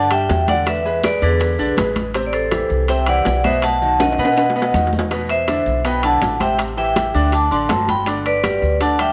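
A driving salsa groove in straight 4/4 at 162 BPM propels this passionate E minor passage, cut from a longer piece. Vibraphone with hard mallets carries the melody up front, its metallic, ringing tone dark and smooth with a slow motor vibrato. Beneath it, a brilliant, polished grand piano supplies short-sustained accompaniment, while a woody, growly pizzicato upright bass on steel strings anchors the low end. The percussion sits farther back: high-tuned congas with a thin-skinned, compressed and saturated snap, close and dry metal-shell timbales, grainy, mellow maracas in a live room, and very quiet, tight bongos struck with hard hands. A drum fill arrives at 4.0 s as the harmony moves through Gmaj7, E7, Am7, B7, E7, Am7 and D7 before coming back to Gmaj7, and a moderate echo-chamber studio reverb surrounds the ensemble.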